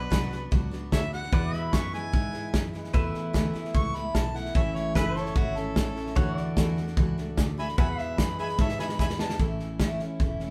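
A straight 4/4 groove at 149 BPM from an airy, polished country drum kit, up front with a punchy kick and medium-tuned snare, drives this nostalgic, easygoing honky-tonk excerpt in A major, where a warm, smooth-topped harmonica solos in a jazz style with light vibrato, scooped notes and tongue slaps until 9.4 s over a bright, full-bodied picked dreadnought acoustic guitar, clean compressed pedal steel chords shaped with slide and volume swells, and a dark, round, foam-muted fingered bass in the background, while a drum fill at 8.6 s leads into the closing A chord, all set in a moderate studio reverb with the band playing live in one room.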